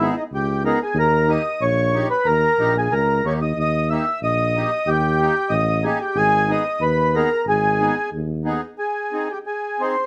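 The recording opens on a mellow accordion carrying the melody up front, its reedy, full tone shaped by the rounded color of a tone chamber. Beneath it, a second accordion plays the accompaniment with a sweet, airy sound and the shimmer of light tremolo tuning. A mellow tuba supplies the bass in a classical style, roomy and touched with light vibrato, before it drops out at 8.6 seconds. This is a bouncy, festive alpine folk dance-band piece at 92 BPM in a straight 2/4, set in G# harmonic minor and moving between G#m and D# before reaching Ab as a new section begins at 8.8 seconds. Moderate studio reverb lends the cut-off passage a sense of space as both accordions carry on to about 10 seconds.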